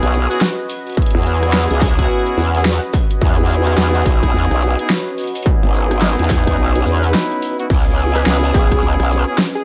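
Glitch hop with a funky, swaggering strut, this excerpt swings its sixteenths over C#m7 and Emaj7 chords in a dry, gritty hardware recording with light reverb. A growling, wobbling bass sits up front, its formant-filtered sine tone saturated through tube warmth, compressed and thickened with chorus. The dubstep drum kit brings a huge snare, bright hats, rim clicks and crashes, joined at 1.0 seconds by a distorted, layered electronic kick drum that drops out at 8.8 seconds, while a grainy acoustic egg shaker ticks close by. A clear horn section fires punchy, pop-style stabs with light vibrato and a smooth top, carried on tape echo and sidechain pumping. In the background, a warbling, nostalgic lo-fi pad of detuned sawtooth and triangle waves breathes in slowly and pumps against the beat, and a catchy, detuned plucky unison lead with a moving notch and filter sweep plays from 0.3 to 2.5 seconds before returning at 8.2 seconds after a short break.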